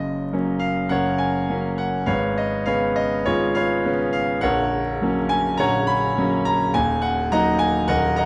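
Bittersweet and passionate, this short excerpt from a romantic classical character piece for solo piano moves at 103 BPM in 4/4 with a free, rubato feel in F# major. A bright concert grand sits up front, spanning from a deep bass at A#0 up to B5 with open, long-sustaining tone as the harmony passes from F# to C#7/G#, F#/A# and D#m. Close, detailed microphones catch the instrument inside a moderate recital-hall reverb, along with vinyl crackle.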